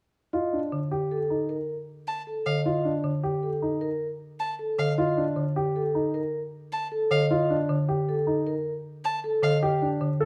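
Urgent yet meditative, this minimalist classical pattern music moves at 155 BPM in 6/4 over a single Dmadd11 harmony. A mellow, ringing vibraphone with soft mallets carries the melody above short-sustained grand piano arpeggios and a woody, rustic marimba accompaniment on D3, while a rich violin with vibrato and portamento enters at 2.1 seconds with its own high arpeggios. The dark, warm production sits in a moderate recital hall reverb, and the passage is cut from a longer piece.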